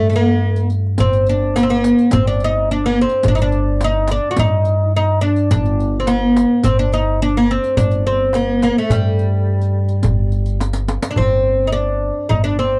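A plectrum-plucked, fretless oud leads up front with a woody, double-stringed voice, carrying the melody in maqam suznak on G at 106 BPM in a straight 4/4 across this festive, passionate Arabic ensemble piece cut from a longer work. A dark, pizzicato upright bass anchors the low end, while a crisp metal-shell darbuka sits in the background and a riq adds bright jingles until 11.2 seconds, stopping as a drum fill that runs from 10.6 seconds comes to a close. The dry, close 1970s-style studio sound keeps every plucked note present, and a new section begins at 11.2 seconds.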